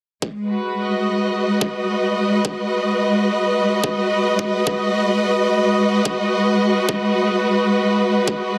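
A lush, bowed string section sits up front in this funky, swaggering glitch hop excerpt at 108 BPM, holding a G#m7 chord in G# minor from 0.2 seconds with expressive vibrato, gliding portamento and a smooth top, all pumping against the sidechain. Alongside it, also up front, a layered, overdriven electronic kick knocks with a high-pass filtered edge and a 63% swing on the sixteenths until 8.4 seconds. A lush hall reverb with a 2.0-second tail surrounds the dense, heavily limited modern master.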